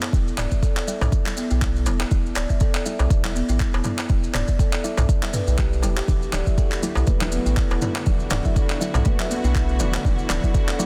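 A swung 4/4 afro house groove with a driving, spiritual mood rides on an up-front, overdriven electronic kick and an overdriven deep house drum kit with handclaps and toms, beneath a round sine sub bass, woody thumb-plucked kalimba arpeggios with tape echo and sidechain pumping, a dark chorused chord stab under a filter sweep, grainy maracas, and crisp metal-shell darbuka in the background. Lush bowed strings with vibrato and bright, high-tuned congas join at 6.1 seconds as the harmony moves from Em7 to Dadd9, all in a small room with a dense, heavily limited master on this excerpt cut from a longer piece.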